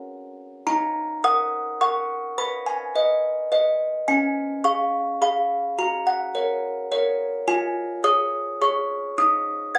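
A delicate, tinkling music box plays alone from the very start, its small-box plucked tones sitting up front as it spells out a dreamy, tender classical lullaby in a gentle three-beat lilt. From 0.7 seconds the harmony drifts through D#m, G#m/B, C# and back to F# before settling on C#/E#, and the passage breaks off at 9.8 seconds as though cut from a longer piece. Captured on a phone in the room, the sound carries a light club reverb and some compression.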